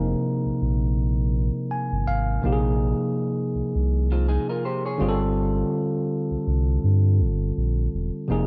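This short excerpt has a lo-fi home-cassette sound, dulled at the top end and wrapped in light reverb. It's an introspective, soulful neo-soul and R&B groove at 82 BPM in 4/4, with a gentle swing on the sixteenths. Up front, a clean tine electric piano played through a combo amp carries the accompaniment across the Fm11, Bb9sus4 and Gm11 chords, adding a short fill between 1.3 and 2.4 seconds. Beneath it, a deep, full sub bass with an added octave holds sustained, mellow sine tones with a fast attack. Further back, a picked electric guitar through a small old amp plays a second line, its compressed, slightly broken-up tone carrying cassette grit and tape echo until it drops out at 5.2 seconds.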